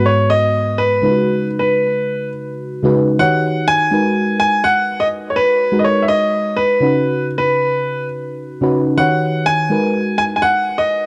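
A lightly swung sixteenth-note feel in 4/4 carries this late-night, sensual R&B fragment, where a clear, intimate baby grand piano with audible action noise and analog delay carries the melody over a round, dark FM electric piano coloured by chorus, phaser and cassette tape, both playing throughout the 11.1 seconds over a G#m7, C#9sus4 and D#7alt progression in a small room with light reverb, captured as a home cassette recording.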